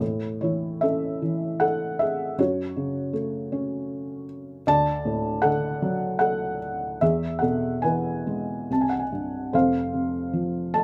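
A felt-muted upright piano, dark and intimate with audible action noise and short sustain, plays a tender, lyrical classical solo in a gently rubato 3/4, moving through A, F#m, D and E before turning to a new section on F at 9.5 s, all captured close and dry in this brief fragment of a longer piece.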